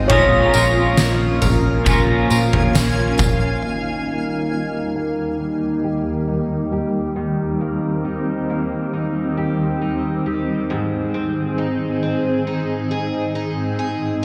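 A bright, shimmering twelve-string acoustic guitar sits up front, picking octave-doubled arpeggios on fresh strings through subtle chorus, tape echo and a low-pass filter across the whole 14.2-second excerpt from a longer dream pop piece. It shares the foreground with a cloudy, evolving granular pad of slow-attack sine tones, full-bodied and blurred in its own reverb, holding sustained chords over Bbm, then Eb, then Ab in Eb mixolydian at a dreamy, ethereal 68 BPM in straight 4/4. The opening seconds are crowded: an oversized, low-tuned drum kit with a punchy kick, fat snare, tambourine and toms pumps in a bright stone room, a dark, round, foam-muted electric bass rumbles beneath, and a slightly broken-up, twangy electric guitar adds tremolo and lush chorus. In the background, a mellow felt-muted upright piano with audible action noise plays a brief intimate melody through tape echo, while a faint twinkling FM granular texture sparkles above with octave-up shimmer. 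By about 3.6 seconds the bass has stopped and the piano and drums have already fallen away. Within the next second the electric guitar and granular texture drop out, leaving the twelve-string and pad to float under a filter sweep in a moderate plate reverb.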